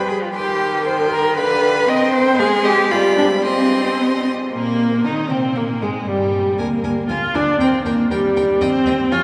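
A quick, urgent classical-period string quartet movement in C minor opens with all four players together at 118 BPM in 2/4, its rubato feel and stormy harmony driving toward G7 before turning to Eb major at 4.5 seconds. Two clear, close violins carry the melody and a focused second line with vibrato, while an expressive viola and a soft-attacked cello, both rich, sit up front with portamento and vibrato. A drenching cathedral reverb with a 6.7-second decay fills the church or concert hall around them in this brief cut from a longer piece.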